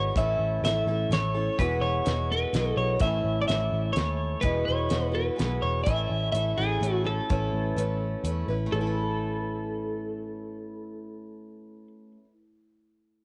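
A twelve-string electric guitar carries the clean, compressed melody up front from the start, soaked in spring reverb, analog delay and cassette tape, over a boxy, bright acoustic archtop with audible finger squeak and a round, foam-muted electric bass that sits dark and forward. From 0.2 s a damped 70s kit with a fat snare and tight kick, roughened by 12-bit sampler grit, drives this nostalgic, hopeful folk rock and heartland rock excerpt in A major at 126 BPM in 3/4, moving between A and Eadd9 before settling on Aadd9. The drums stop at 8.4 s, just before a second section begins at 8.7 s, leaving the guitars and bass in the moderate booth ambience of a home cassette recording, with the archtop ringing on alone to 12.4 s.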